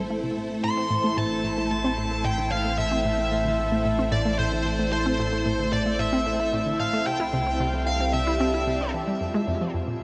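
Ambient, sequencer-driven space music with a hypnotic, cosmic mood, cut from a longer piece and bathed in a huge, wet reverb. Lush string-machine chords with phaser and ensemble chorus sit over a bright, detuned analog pluck riff carrying chorus and delay, a deep analog bass, and a very quiet, pulsing gated texture, while a filter sweep moves across the arpeggio sound. From 0.6 seconds a smooth, overdriven electric lead guitar sings the melody up front, its notes carrying delay.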